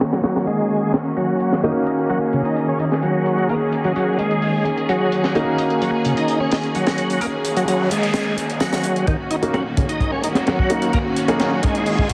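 A swaggering, energetic breakbeat excerpt at 129 BPM in Eb minor opens on an Ebm7 chord, with an up-front symphonic string section holding smooth, lightly vibrato-tinged sustained chords that pump against the beat, while a dark, mellow concert grand piano adds stabs through a digital delay. A crisp fusion drum kit, acoustic with a punchy kick, a high-tuned snare and a pumping small-room sound, drives the straight 4/4 groove, and a faint analog electronic hi-hat sits beneath it. Almost at once a shouting tonewheel organ takes the riff, full and clean with key click, chorus vibrato, a slow rotary speaker, tube saturation and 12-bit sampler grit. Filter sweeps move across the organ and strings during the opening stretch, and an electronic noise sweep and riser creeps in from the background at 7.5 seconds. At 9.1 seconds a build-up begins, with filter sweeps shifting to the drums and piano and a very quiet, fat sawtooth-and-square analog bass entering low with a moving notch. 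The whole mix carries a wet plate reverb in a small room, heavy radio-style compression and vinyl crackle.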